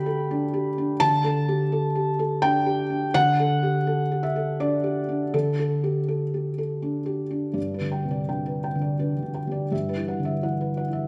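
A recital hall's wet reverb, with a 1.7-second decay, surrounds a felt-muted upright piano placed up front, its thick felt giving a dark, mellow tone with the soft noise of the action audible. This is an intimate, tender fragment of neoclassical minimalist piano in 3/4 at 84 BPM, played with a rubato feel and tuned to A4 = 438 Hz, the solo instrument ranging from G2 to B5. A Dsus4 opening settles into a new section at 7.6 seconds on G, moving to Emadd9/G at 9.7 seconds before the passage is cut from the longer piece.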